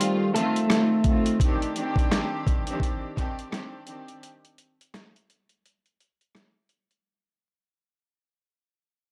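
This dark boom-bap hip-hop fragment, cut from a longer piece, opens at 85 BPM in C dorian with a swung 16th-note feel. A clean, fingered electric guitar melody, warm bowed strings and a sampler-style drum kit all sound from the start. The compressed, filtered guitar carries analog delay and stops at 1.4 s as the harmony moves from F7 to Cmadd9. Played sul tasto with a soft attack, the string ensemble floats up front with a pure yet distant tone, colored by cassette tape, and holds until 4.2 s. From there the drums carry a break alone: a thumpy, pitched-down kick, a medium-tuned snare, rim click and hi-hat, compressed and tape-warm. The dry hardware recording adds transformer saturation and vinyl crackle for a gritty edge, and the whole fragment fades out across its 7 seconds.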